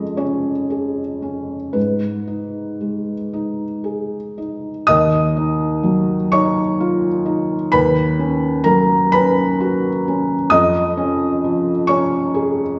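A felt-muted upright piano, soft and mellow with a thick felt tone, plays alone in this intimate, wistful neoclassical minimalist fragment in Eb minor, moving in a rubato 6/8 at 37-45 BPM counted in dotted quarters across a range from Eb2 to Eb6, its harmony drifting from Db/F and Abm into a new section on Ebmadd9 at 4.9 seconds, then through Badd9/D# before settling back on Db/F at 10.5 seconds, the whole heard from further back in a wet recital hall with a dulled top end.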